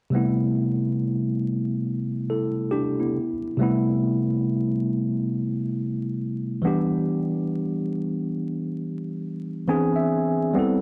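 Reflective and nostalgic, this short hip hop excerpt features a lone tine electric piano, worn and slightly out of tune yet clean, sitting up front as if heard through built-in speakers, with a cassette-tape character. It moves at a swung 16th-note lilt from Am9 through a brief pause back to Am9, then on to Em7 and a tense E7b13, with a piano fill arriving at 9.2 seconds. A moderate plate reverb and a bed of vinyl crackle surround the sound, deepening its dusty, faded air.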